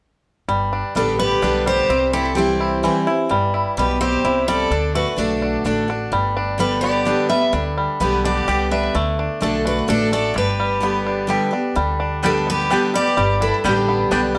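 Driving and virtuosic, this bluegrass passage in G major moves at 128 BPM in a straight 3/4. A full-bodied dreadnought guitar picks the accompaniment beneath a twangy, up-front banjo playing fingerpicked arpeggios, while a thumpy, dark upright bass plucks the low end. A second bright dreadnought guitar carries the melody with finger squeak and slapback echo, joined by a clear, boxy fiddle playing a second line with light vibrato, and a double-strung mandolin adds woody stabs from 12.2 seconds in a moderate studio room.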